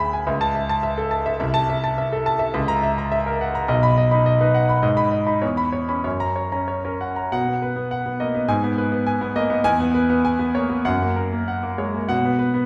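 A concert grand piano plays this brilliant, heroic classical virtuoso study alone, sounding clear and polished, with a deep bass and an intimate, up-front presence that lets its action noise come through. The music is in B major and 2/4, moving at roughly 92-107 BPM with a rubato feel, and the piano spans B1 to B5. The opening phrase moves through A/C#, Am/C and F#7/C# before settling on B at 3.7 seconds, then turns through G#m, C#m7/E and F#. A second phrase begins at 7.3 seconds, restating that progression from B to F# and closing on B5 at 12.1 seconds. The piano rings out in a recital hall with a generous, wet reverb, and the passage is cut from a longer piece.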